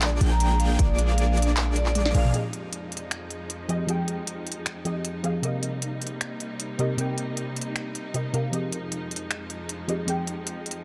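Set in light reverb, this lush, dreamy future bass excerpt moves at 155 BPM in 4/4 with a half-time feel, in F minor. It opens on a drop over a Bb7 chord, where huge, detuned supersaw chords play a bright riff through phaser and a low-pass filter. Beneath them a boomy 808-style bass sits up front, an airy lead runs arpeggios in the background with chorus and phaser, and a vibraphone struck with hard mallets adds a metallic, ringing melody soaked in dub echo, while a hard-clipped electronic kick lands briefly. A drum fill closes the drop, and at 2.3 seconds those layers give way to a soft, round pluck with ensemble chorus and delay, carrying the accompaniment over Fm7, Cm7 and Fm7 chords. Throughout, a smooth studio string section holds sustained chords, and a trap kit of crisp hats, sharp snare, handclaps, finger snaps and toms stays up front. Sidechain pumping breathes through the strings, lead, supersaws, bass, vibraphone and pluck.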